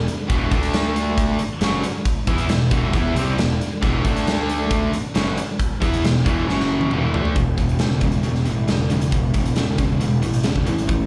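Two picked electric guitars drive this brooding classic rock clip at 136 BPM in a straight 4/4, one an overdriven stack with slapback echo and the other tightly distorted, both bright and set back in the mix as they share a riff spanning E2 to E4. A fuzz-drenched picked electric bass, growly and up front, holds down the low end between E1 and E2, while an acoustic rock drum kit of punchy kick, medium-tuned snare, hi-hat and toms sits forward in a stone-room ambience. The riff moves through power chords on E and D with a stretch of E minor, and a drum fill from 6.5 to 7.4 s, under a brief F# power chord, pushes the music into a new section. The driving performance comes across as a live club gig heard through the house PA, with light reverb giving it a roomy, raw edge. It is cut from a longer piece and runs just over 11 seconds.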